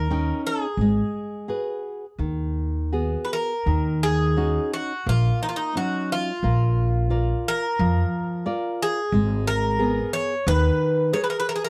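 Fado-style ballad, mournful and passionate, moving in a rubato 4/4 at around 79-91 BPM, shifting from G# minor to Eb minor at 3.7 seconds in this section cut from a longer piece. A bright, metallic Greek bouzouki with double strings and some octave-doubled strings carries the picked melody up front, while a full-bodied classical nylon-string guitar with fresh strings fingerpicks the accompaniment, its finger squeak audible. A woody pizzicato upright bass anchors the low end until it drops out at 10.7 seconds, all captured by close, detailed microphones with light reverb.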